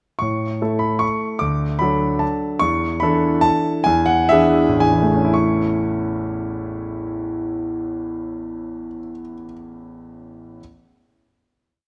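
A clear, intimate grand piano, heard up front with its action noise audible, plays this short, elegant and playful classical waltz alone in A major. It carries a single-line melody over a waltz bass in 3/4 at a rubato 109-155 BPM, moves through A, D, E7sus4 and E7, slows from 2.0 seconds, and settles on a final A chord at 5.4 seconds that rings in a moderate scoring-stage reverb.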